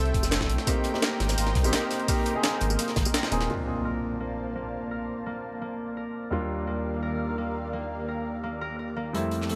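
A straight 170 BPM liquid drum and bass groove in Bb major opens mid-drop, with a gritty, pitched-up breakbeat kit carrying a high-tuned snare, hats and tambourine up front, a compressed thumpy electronic kick, a faint acoustic kit in the background, very quiet low-tuned bongos, and a smooth sawtooth synth bass underneath, until the bass and breakbeat drop away at 3.5 seconds. An electronic impact then marks the shift from Fmaj9 and Abmaj9 to Bbmaj9 and Ebmaj9, while a dark, mellow grand piano with 12-bit sampler grit and digital delay, a lush detuned unison pad with chorus, phaser and sidechain pumping, and a bright, ringing thumb-plucked harp under a filter sweep carry on. The acoustic kit returns briefly at 9.1 seconds in this warm, lush passage cut from a longer piece.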